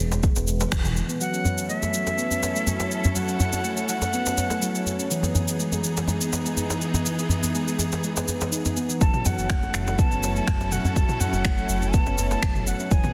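Densely limited and bathed in moderate hall reverb, this hypnotic, spiritual afro house excerpt at 123 BPM in F# dorian sets ringing handpan arpeggios with delay and filter sweeps over a deep house kit with cabasa, snaps and toms, close soft-handed djembe, and smooth detuned synth bass and a deep, up-front kick that drop out between about 1.0 and 9.0 s, while clear, biting bowed strings sustain chords from 1.2 s and a breathy, bright jazz flute with crisp chiff sings high phrases before returning for the build-up at 9.0 s.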